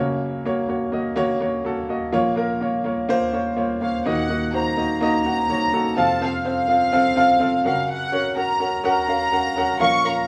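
A moderate large-room reverb of 1.1 seconds surrounds this short pop passage, played live by a band in one room. At 125 BPM in a straight 4/4, a smooth, vintage grand piano with short sustain sits up front on accompaniment throughout, moving through Gb, Bbm, Ebm, F and back to Gb. At 3.8 seconds a reedy, gut-string violin section with light vibrato and a period-style tone joins on the melody between F5 and Db6, giving the music a bittersweet yet driving feel.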